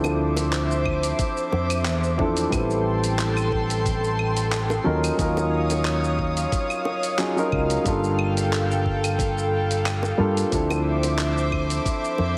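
A gently swung 16th-note groove at 90 BPM in 4/4 comes from a gritty, sampler-style soul kit of claves, handclaps, hi-hat and shaker, with tight, high-tuned bongos in the background and a knocking electronic kick entering at 0.9 s. In this relaxed sunset chillout piece in G dorian, a dark grand piano with long sustain and tape echo plays accompaniment up front, while a round, amped fretless electric bass with lush chorus anchors the low end. Above them, an airy, breathy pad holds slow-blooming chords through Dm9, Am9, Ebm9 and Gm9, all inside a concert hall reverb and a heavily compressed, radio-like sound in this passage cut from a longer piece.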